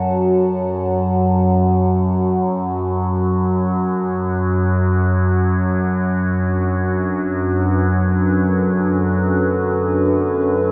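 This dark ambient drone piece, cut from a longer work, drifts in free time with a dark, unsettling mood, tuned to A4 = 439 Hz and moving from F#m to Bm7/F# at 4.2 seconds. An up-front drone built from sawtooth and sine tones holds low between F#2 and F#3, its resonant, shifting overtones softened by slow attacks, long releases, chorus and its own reverb. Behind it, a deep, moody analog pad of detuned square, sawtooth and triangle waves with a sub octave sustains chords from F#2 to A5 through chorus and phaser, all set in a cavernous cathedral reverb with a cassette-tape grain.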